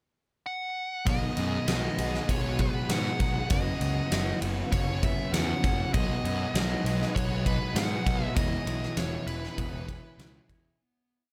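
A huge arena drum kit sits up front with a punchy kick, fat snare and ride cymbal, powering a dreamy, blissful shoegaze and dream pop rock piece at 99 BPM in B major, under a nasal, overdriven lead guitar with a parked wah and tape echo that opens the pickup bar at 0.5 s with motif-based song phrases. From 1.1 s a fuzzy, overdriven bass drives eighth notes beneath a thick fuzz guitar with analog chorus and a slightly broken-up, lo-fi guitar with reverse reverb, both strumming chords with whammy-bar dips, while a bright, twangy twelve-string picks very quiet arpeggios and a warbling vintage organ-string ensemble holds a mellow pad. The short verse moves through B6, F#7sus4 and E6 in a small room sound before fading out from 8.4 s.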